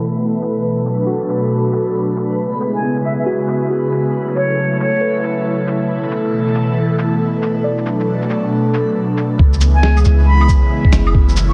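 A shuffled 4/4 future garage groove of muffled, pitched-down cabasa, shaker, snare and claves carries this rainy, ghostly fragment, where a breathy, phased pad pumps above a reversed granular swell and dark, felt-muted synth keys with analog delay, a bright, close-miked concert flute sings expressive vibrato lines from 2.7 s, and a round, deep 808-style bass and thumpy, up-front kick drum arrive at 9.4 s, all wrapped in lush hall reverb and a dense, cassette-dulled master.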